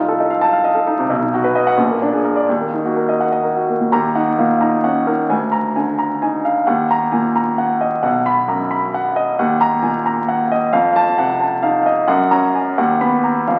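A very old 78 rpm record gives this short piece a bed of vinyl crackle, while a wet reverb from a large scoring stage trails each phrase for almost two seconds. The music is a classical virtuoso piano study in 6/8, played with free, elastic rubato and a stormy, passionate mood. A single baby grand carries everything as a solo, its tone clear and polished and placed up front despite the aged surface of the disc. The writing spans the keyboard from deep Bb1 in the bass to B5 at the top, moving through dark minor harmony and tense dominant sevenths such as F7 and Bb7. After an opening phrase, a second, longer passage begins at 3.9 seconds, and the fragment, cut from a longer work, breaks off at 13.6 seconds on a B chord over D#.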